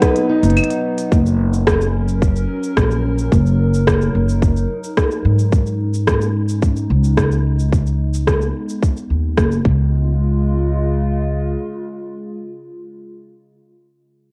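A thumpy, woody upright bass sits up front in this folktronica excerpt, entering at 0.4 s and carrying a filter sweep until 9.9 s. The piece moves at 109 BPM in a straight 4/4 in Db mixolydian, with a warm, delicate mood and the hazy character of a home recording on cassette set in digital ambience. An overdriven electronic kick and an organic electronic kit of claves, crisp hi-hat, rim click and shaker also sit close, both re-recorded in a large room and given a tape tint. A warbly, nostalgic pad holds detuned, sustained chords through chorus, phaser and reverb, with a filter sweep of its own. A dark, boxy fingerpicked parlour steel-string guitar plays arpeggios with tape echo only at the opening, and a bright mandolin melody is barely audible in the first moments. A brief break comes early, and the chords move from Cb through Gb and Dbsus2 to Db.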